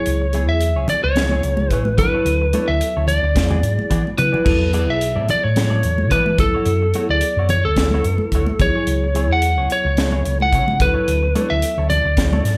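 A lightly driven, slightly broken-up lead guitar carries the melody up front in this slick, funky electric jazz fusion cut at 109 BPM in E mixolydian, backed by a mellow tine electric piano with phaser, clean hollow-body guitar stabs in the background, a dark, round fingered bass, a crisp, polished fusion drum kit with a high-tuned snare, punchy kick and a fill at 4.1 seconds, and damped, thick-skinned congas entering at 0.9 seconds, with the band playing live in one room under a moderate large studio reverb.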